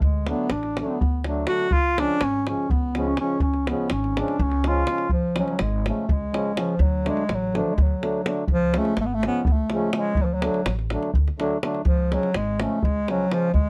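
Balkan folk in a wedding-band style, fiery and virtuosic at 249 BPM in 7/8 in C# phrygian dominant, this brief cut from a longer piece features an up-front, mellow, classical-style bass clarinet playing a solo over the first 5.1 seconds before carrying on with the melody, backed by woody, pizzicato upright bass, a tight, close davul, and a reedy, dark, round accordion accompaniment that enters at 0.3 seconds, all captured with close, detailed microphones and little reverb as the harmony rocks between D and C#.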